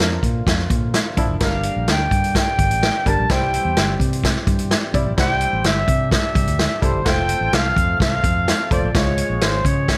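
Uptempo 1960s-style soul with a joyful, danceable straight feel, led by a mellow, distant trumpet melody with vibrato, scooped notes and slapback echo over a woody, slightly detuned upright piano, a lightly overdriven tonewheel organ with key click sitting in the background, a round, foam-muted electric bass and an up-front vintage drum kit with a punchy kick, all in a small, lightly reverberant room as a brief cut from a longer piece.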